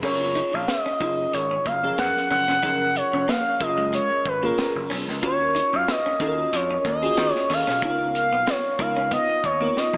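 From the start, a smooth, expressive sawtooth synth lead with chorus and vibrato sings up front over sparkling, bell-like FM electric piano, a clean picked electric guitar riff in the background, punchy vintage slap bass and a tight funk kit with a high-tuned snare and dark cymbals, giving this bittersweet, slick 1980s jazz-funk pop fragment a polished, lush hall sheen as the chords move from Db to Ebm9 and Db13, before the guitar drops out at 9.7 s and a drum fill arrives at 9.8 s.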